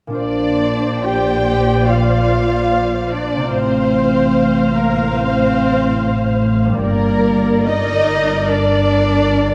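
Hopeful and uplifting, this rubato cinematic orchestral passage opens with ringing harp arpeggios at 0.1 seconds, joined at 0.2 seconds by an expressive solo cello melody with portamento and a soft attack, a lush, distant violin section carrying the tune over a second violin line in the background, close violas in accompaniment, and a bass foundation from a focused cello section and a rich double bass section, all set in a moderate scoring-stage reverb as the harmony moves from Bbadd9 through F/A to Gm.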